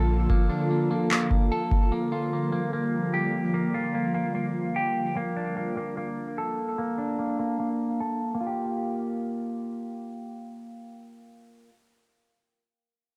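Melancholic and ethereal, this atmospheric cloud-rap fragment at 148 BPM in a half-time 4/4 feel sets an airy, detuned pad with ensemble chorus against a twangy, compressed clean electric guitar playing phaser-tinged arpeggios through tape echo until 11.8 seconds, while a booming, overdriven analog drum machine with deep kick and handclaps punches in briefly from 0.3 to 1.9 seconds, all under a filter sweep over Bbmaj7 and Gm7 chords in G minor with a dry, gritty hardware character.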